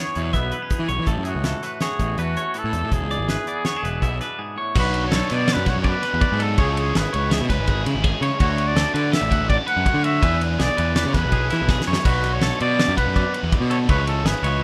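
Set in a straight 5/4, this bright, playful math rock and midwest emo clip is led by a breathy, intimate trumpet melody with vibrato and slapback echo. It rides over spring-reverbed arpeggios from a twangy clean guitar, a second twangy guitar picking accompaniment until 4.7 seconds, a round, up-front fuzz bass with overdrive, and a loose small-room drum kit with a fat snare, punchy kick and dark cymbals. After a brief break, a biting, double-tracked overdriven guitar riff enters at 4.8 seconds, a drum fill arrives at 11.7 seconds, and the whole has the rough feel of a home demo.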